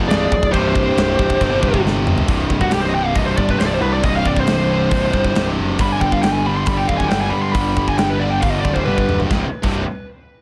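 A straight 4/4 pulse at 137 BPM drives this heavy, aggressive metal passage, cut from a longer piece, where two high-gain rhythm guitars grind out distorted riffs in the background, one scooped. A growly, fuzzed bass and a tight, polished drum kit with bright cymbals and an airy big-room sound push them along. A bright lead guitar with digital delay carries the melody, joined by a darker second lead line until 1.8 s, then takes a solo from 2.3 s to 9.3 s over a dry, forceful mix that moves from Fm to C5 and G5 power chords.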